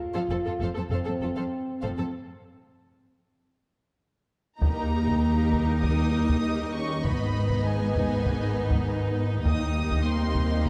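Triumphant and majestic, this cinematic orchestral cue moves at 99 BPM in a straight 4/4, cut from a longer piece. It opens on an F chord with a mellow French horn section holding sustained chords in the background, while bowed strings gather beneath: a rich cello section and a distant double bass section anchor the low end, a clear, lush viola section fills the middle, and a dark, expressive violin section carries a second line. Above them, a smooth studio violin section with light vibrato sings the melody, reaching as high as Eb6. A break runs from 2.1 to 4.6 seconds. At 4.6 seconds the harmony shifts to Eb and a taiko ensemble enters with heavy sticks in a small-room sound, alongside a very quiet, roomy trombone section adding dark sustained chords as the music passes through Abm and back to Eb. Moderate scoring-stage reverb gives the whole cue a dark, warm production.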